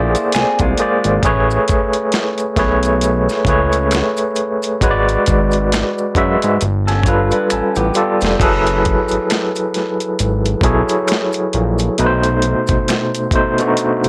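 The overdriven tine electric piano carries the accompaniment in this introspective, sultry neo-soul and R&B passage, its barky, gritty tone pushed through a combo amp with a fast tremolo and sitting up front across the full 14.1 seconds. Beneath it, a fat analog bass with a thick, wave-folded sawtooth character and a filter sweep holds down the low end, while a dusty sampler-style drum kit brings a thumpy kick, a medium-tuned snare, hi-hat and crash with a compressed, overdriven edge and a drum fill from 7.5 to 8.4 seconds. The tempo is a slow 67 BPM in 4/4 with a swung sixteenth-note feel, in F# minor. An electric guitar through a small old amp adds a slightly broken-up, lo-fi second line in two brief picked appearances, at the very start and again from 6.9 to 8.4 seconds. Maracas and a group handclap sit close but in the background, and light reverb lends the whole a gentle sense of space as the harmony moves through rich extended chords such as Amaj9, G#m7b5, F#m11 and B7b9.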